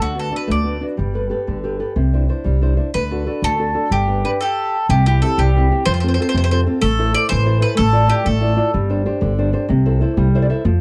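A bright, picked bowl-back mandolin with doubled strings carries the melody up front in this romantic, sunny Italian folk serenade at 124 BPM in 6/8, sounding briefly at the start and returning at 2.9 s over a fingerpicked flamenco guitar with audible finger squeaks and a woody, growly pizzicato upright bass, as the music moves from G major to C major at 4.9 s before a nylon-string guitar fill at 10.2 s, heard in a dry, close 1970s-style small room in a passage cut from a longer piece.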